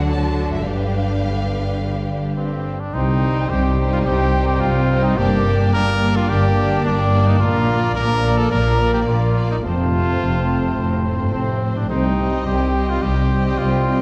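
A soaring, adventurous cinematic film-score excerpt in a heroic vein, where lush, vibrato-rich violins carry the melody over a second violin line, quiet viola accompaniment, ringing harp arpeggios and a rich bowed bass of cellos and double basses, before a bright trumpet cuts in with stabs at 2.4 seconds and at 2.9 seconds a dark clarinet, pure silver flute and distant oboe add second lines while roomy French horns and tight trombones hold sustained chords, all bathed in a wet concert-hall reverb within a dark, warm production.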